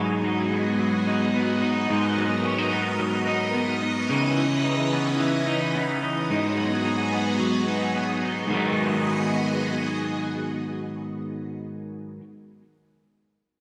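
Haunting and ethereal, this dream pop excerpt moves at 109 BPM in a straight 4/4, sitting in G# minor. An electric guitar at the edge of break-up carries arpeggios throughout, its fingered, twangy tone slightly broken-up and placed up front, soaked in lush chorus and digital delay. Alongside it, a phased string machine holds sustained chords with a swirling, vintage sawtooth character, its slow attack and long release shaped by ensemble chorus and phaser, and it stops at 11.5 seconds while the guitar rings on to 12.2 seconds. The harmony settles on G#m7, shifts to C#m9 at 4.1 seconds, and returns to G#m7. A wet hall reverb and a touch of small-room ambience frame the bright 1980s-style digital production, and the passage is cut from a longer piece.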